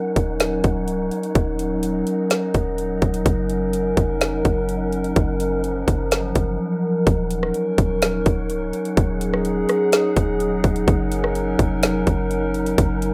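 Hazy and ethereal, this atmospheric cloud-rap excerpt moves at 126 BPM in a half-time 4/4 feel, centred on Eb minor and drifting between Ebm7 and Gb6 chords. A warbling, nostalgic pad with a lo-fi, tape-like character holds sustained chords up front, its slow attack and long release softened by chorus and reverb while sidechain pumping makes it breathe. Beneath it, a faint, breathy noise layer tuned like wind adds a dark, airy haze with its own reverb. From 0.2 seconds a trap kit sits forward in the mix, with a hard-clipped kick, woody snare, metallic hats and rim click, while a clean, boomy 808-style bass gives deep, sine-like notes that decay after a fast attack. A brief silent gap from 6.6 to 7.1 seconds splits the passage into two halves, and the rough home-demo mix carries a digital sense of ambience.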